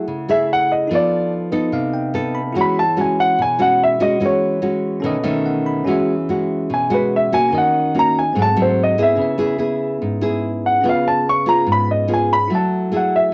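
This excerpt has the character of a home cassette recording, set in a light reverb. It is a sophisticated, breezy bossa nova in a straight four. A baby grand piano carries the melody from 0.3 seconds, sitting up front with a warm, natural tone and soloing through the whole passage. A classical nylon-string guitar accompanies, also up front, its fingerpicked, full-bodied acoustic sound marked by an audible finger squeak. A bell-like tine electric piano adds bright, clean, direct fills, first at 1.3 seconds and again at 5.0 seconds. The harmony moves through rich colours such as F#m9, F7#11, E69, G#7b9 and C#7 across two statements of the same section.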